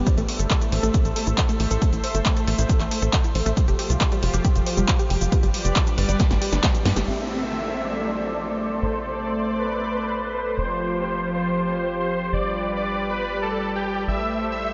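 Uplifting trance, driving and euphoric, cut from a longer piece: a lush, detuned unison pad holds sustained chords under chorus and a filter sweep, while a tight, dark sequencer bass and a punchy unison pluck with tape echo pump along, the pluck playing arpeggios until 7.0 seconds. A tape-warm electronic kick and an analog drum machine with snare, handclaps, hi-hat and shaker drive the opening and close it with a drum fill, and at 7.1 seconds a huge, compressed supersaw takes the melody through a low-pass filter sweep and tape echo as a brief electronic downlifter sounds beneath it. The whole mix is dreamy and soaked in long ambient reverb, its highest frequencies rolled away.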